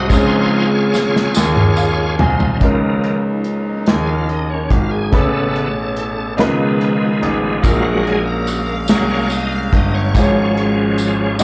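A shouting, key-clicking tonewheel organ solos through a slow rotary speaker from the first moment of this jubilant slow gospel excerpt in a straight 6/8, over natural baby grand piano chords with slapback echo and clear, up-front grand piano bass, while a dark, tight acoustic drum kit opens with a fill, a piano fill arrives, jingly tambourine drops out after the opening and returns at 7.6 seconds, and a lush, woody bowed string section enters in the background at 2.6 seconds, all heard as a live gig through the venue's PA with club reverb.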